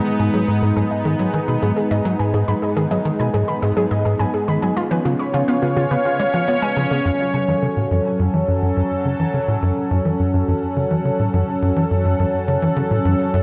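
A tight, punchy sawtooth sequencer bass drives this expansive, cosmic piece of ambient space music at 105 BPM in 4/4, alongside an evolving, detuned resonant pad sustaining bright chorused chords, a warbly, dusty lo-fi pluck spinning tape-echoed arpeggios until 7.0 s, and a bubbling stepped-filter texture in the background, while the dreamy mix sits in lush hall reverb and the key shifts from G# minor to F# minor at 7.1 s.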